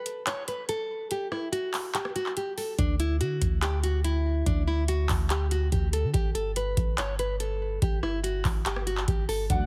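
Triumphant yet dreamy, this short trap-inflected hip hop cut moves at 143 BPM in 4/4 with a half-time feel, set in D major. A fingerpicked nylon-string guitar carries the melody from the start, its classical tone placed up front and trailed by delay, while a booming analog drum machine enters almost immediately with a deep kick, metallic hi-hats, handclaps and rim clicks that sound re-recorded in a small room. The opening stretch is a break, and at 2.8 seconds a deep, boomy 808-style bass arrives on a D chord, its dark sine tone with a noise layer hitting fast and decaying. In the final moments, at 9.5 seconds, a velvety synth lead with vibrato and chorus touches a high note as a mellow, detuned analog pad with chorus sustains chords beneath it. The mix is dry and heavily compressed, giving it a radio character.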